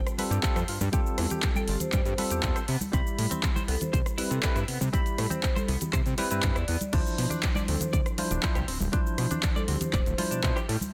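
A bell-like tine electric piano with sidechain pumping and delay opens this cosmic, sensual nu-disco excerpt at 120 BPM in D dorian, quickly joined by a layered house kit with crash, handclaps, hi-hat, rim click and shaker, a twangy clean guitar riff with analog chorus, thick-skinned congas, a fat, saturated sawtooth bass pumping up front, and a punchy electronic kick, before a metallic, ringing vibraphone melody with delay enters at 1.6 seconds over chords moving from G9sus4 to Cmaj7 to Dm9 in a dense, heavily limited mix with light reverb.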